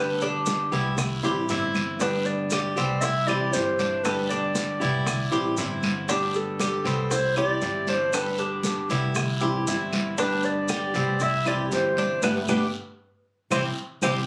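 Relaxed and warm, this Cuban son and guajira piece in G major moves at 117 BPM in straight 4/4. Up front, a dark clarinet with a soft attack and smooth top carries the classical-style melody through plate reverb over fingerpicked flamenco guitar with audible finger squeak, a picked, metallic Cuban tres playing arpeggios on double strings, and woody pizzicato upright bass. Tight high-tuned bongos and vintage, band-limited claves sit in the background alongside very quiet, damped thick-skinned congas, grainy maracas and a raspy guiro, all caught on a phone in a club-like room until a band accent at 12.2 seconds and a drum fill at 13.8 seconds close the cut.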